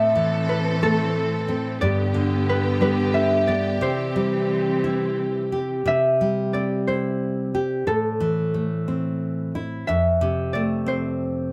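Close, detailed microphones and light reverb frame this sleepy, innocent children's lullaby fragment in C major, drifting rubato at 60 BPM in 6/8, where a mellow, ringing, fingerpicked concert harp carries the melody over an up-front, deep classical nylon-string guitar accompaniment with audible finger squeak, while a rich, biting studio string section holds bowed chords with vibrato until 5.8 s.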